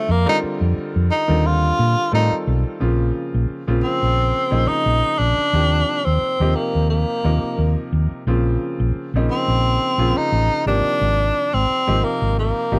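This slick, bright electric jazz fusion excerpt opens with a tenor saxophone solo, set against baby grand piano accompaniment and a fingered hollow-body short-scale electric bass that arrives at 0.1 seconds. The saxophone sits up front with a clear jazz tone, soft attacks, vibrato and scooped notes. The piano's harmony moves from F9sus4 to Bbmadd9 at 2.8 seconds, then through Eb69, back to Bbmadd9 and on to Abmaj9#11. The bass is dark, round and amped, and also sits up front. The piece moves at 88 BPM in 4/4 with a light swing on the sixteenths. The dry, close sound has a small-room ambience and a 1970s studio feel, and the excerpt runs to 12.8 seconds.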